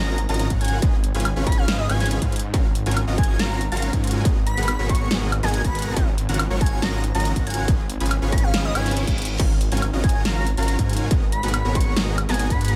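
Future bass at 140 BPM in a half-time 4/4 feel, this bittersweet, lush excerpt sits in G# dorian, tuned slightly below standard pitch, and cycles through a chord loop of D#m9/G#, C#9/G#, F#maj7/G# and G#m9 over a constant G# pedal. An airy, dreamy lead carries the melody high up, with chorus, vibrato, portamento and tape echo giving it a soft, mellow glow, while a huge, dense supersaw riff with vibrato fills the middle beneath it. A thick, detuned saw bass with chorus and saturation sits up front, and sidechain pumping breathes through the lead, supersaw and bass. The big-room dance kit enters at 0.2 seconds with a huge snare, metallic hats, crash and woodblock, joined at 0.5 seconds by an up-front, distorted electronic kick with tape-warm weight. A reverse cymbal rises at 8.7 seconds, and the whole mix sits in a digital ambience.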